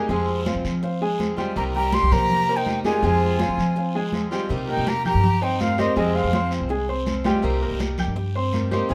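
Piano arpeggios and a picked acoustic guitar open this short excerpt of Cuban son and guajira, a sultry, nostalgic piece in C minor at 164 BPM in a straight 4/4. A pizzicato upright bass, woody, dark and thumpy with gut strings, sits up front almost at once. It is joined by ringing, high-tuned congas played with hard hands and a raspy, vintage guiro low in the mix. The swing-style guitar is bright and boxy, while the baby grand sounds open with long sustain. At 1.6 seconds an airy metal flute takes the melody up front, tongued and unsteady, with vibrato, as a single bowed violin traces a smooth, even second line in the background; both stop at 6.5 seconds. The harmony sways between Fm and Cm7 throughout, set in a moderate studio reverb.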